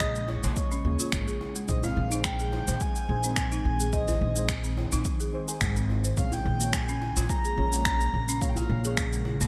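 Meditative organic downtempo at 107 BPM in Bb minor with a light 16th-note swing: a breathy, flute-like synth lead with vibrato carries the melody through lush chorus, delay and shimmer reverb, a deep, detuned chord stab pumps softly in the background over a very quiet ethereal pad, a dry, rustic marimba plays arpeggios, a woody pizzicato upright bass adds a thumpy, tube-saturated low end, and an overdriven punchy kick, tape-toned electronic finger snaps and shaker, and a distant djembe with metal rattles shape the groove, set in a bright 1980s-style digital mix with moderate plate reverb.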